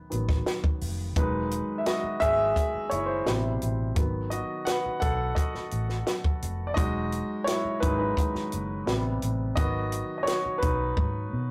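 Lush and warm, this short clip from a longer 1970s-style soul piece moves at 86 BPM in a straight 4/4 feel. A concert grand piano sits up front from the first moment, carrying the featured solo across the whole 11.5 seconds with a natural tone and deep low end, ranging from B2 to F#5. Beneath it, a vintage fingered electric bass enters at 0.1 seconds, dark, round and foam-muted, with an amped character. A compact cocktail drum kit joins at the same time, dry and close, with a high-tuned snare, a tight kick and hi-hat, and it closes with a fill at 11.0 seconds. The harmony circles from a rootless G#m7 through Emaj9 and Am7 before returning to G#m7, heard twice over. Light reverb and tube saturation give the whole a rough, rehearsal-room intimacy.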